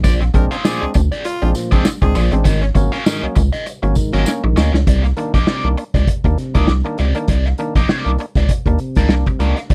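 A strutting 4/4 funk groove with a light sixteenth-note swing sets a playful mood in this short cut from a longer piece, driven by a vintage acoustic drum kit whose punchy kick, medium-tuned snare and hi-hat sit in a small, pumping room with a rolled-off top, capped by a drum fill from 4.3 to 4.9 seconds. Underneath, a rubbery square-wave synth bass sits dark and up front, its hollow, bouncy filter pluck giving a fast attack and a sustained, resonant body. A biting overdriven electric guitar with wah handles the picked accompaniment, while a tonewheel organ adds percussive stabs with key click, third-harmonic percussion and tube-saturated grit through a stationary speaker. A raspy, forceful tenor saxophone plays an edgy second line full of vibrato before dropping out at 2.3 seconds, and a jingly tambourine sits in the background until 4.7 seconds. The harmony moves from Bb9 to Ab9sus4 and then settles on Cm9 as the second section begins, all captured dry with little reverb.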